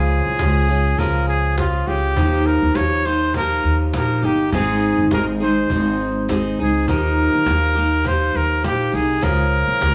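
A breathy, whispered trumpet carries the melody up front, its soft attack and intimate tone floating over this easy-going, sunny acoustic pop excerpt in Eb mixolydian at 102 BPM with a light sixteenth-note swing. Beneath it, a picked steel-string acoustic guitar supplies the accompaniment with an auditorium-like body and audible finger squeak, moving through Db, Ebadd9 and Ab. A pizzicato upright bass sits prominently in the mix, woody and growly from its steel strings. The cajon joins at 0.4 seconds in the background, snappy with its snares yet band-limited and vintage under soft hands, while a jingly, bright tambourine rides close but low from 0.1 seconds. Light reverb and small-room ambience give the feel of a band playing live together, with the passage cut from a longer piece at 9.9 seconds.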